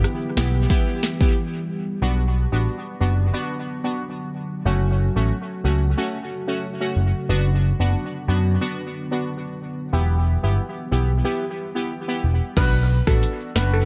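Opening on a brassy, nasal synth stab with phaser and dub echo over a moody sawtooth pad, sharp-snared drums, an egg shaker and a growly overdriven picked bass from 0.4 s, this bouncy, tough dancehall cut in B minor at 91 BPM drops its drums for a break at 1.4 s, rides the pumping pad and bass through Bm, F#m and Em, then brings the kit back at 12.6 s with a shimmering steel pan melody soaked in dub echo in an echo-heavy digital ambience.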